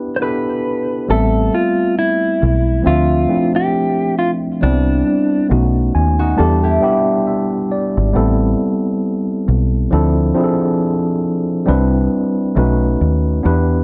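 A slow 68 BPM groove in 4/4 with a lazy 16th-note swing anchors this reflective, melancholic lo-fi hip hop excerpt in A minor. A mellow tine electric piano carries the accompaniment from the opening, its clean tone softened by cassette tape and a low-pass filter, while a filter sweep colors the first 1.1 seconds. A clean, dark, compressed electric guitar states a fingered melody up front from 0.2 to 5.5 seconds, and a deep dub fingered bass enters at 1.1 seconds with a round, foam-muted, amped weight. Briefly, a small, fingerpicked nylon-string guitar adds a second line through a tape echo. The chords cycle through Em7, Am9, Dm9, Cmaj9 and B7, and the whole sits in a wet small room with worn, warbling old-tape pitch drift that deepens its melancholy.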